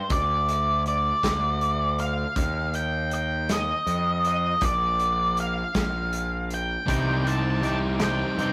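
A dark, fuzzed-out lead guitar opens this angsty, brooding fragment of quiet-loud alternative rock in a straight 6/8, joined almost at once by an up-front, growling overdriven bass and a loose, small-room indie drum kit with a tight kick, before a clean, twangy fingered guitar, a bright distorted guitar and a sludgy, dark overdriven guitar enter together at 6.9 s as the chords move through Ebadd9 and Bb to Cmadd9, all captured in a rough rehearsal-room recording with a stony reverb.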